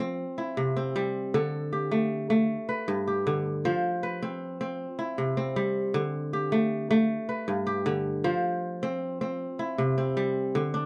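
A solo kora, ringing and crisp and placed up front under close, detailed microphones with light reverb, plays a flowing, reflective West African traditional passage in 12/8 at 104 BPM, tuned to A4 = 444 Hz and spanning G2 to C5 as it cycles through C, D5, G and F5 in this brief cut from a longer piece.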